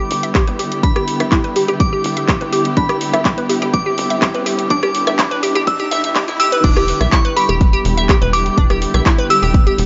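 A punchy, up-front electronic kick drives this dreamy, expansive progressive house excerpt in E minor at 124 BPM, where a crystalline FM synth bell melody and glassy wavetable pluck arpeggios under a filter sweep shimmer with chorus, phaser and delay over dark, woody bowed strings on an Em7 chord, a tight sawtooth sequencer bass and a house kit with bright hats, handclaps, rim clicks and crash, all pumping to the sidechain as a background riser builds from 3.0 seconds, joined by a swell at 5.7 seconds, into the drop at 6.6 seconds.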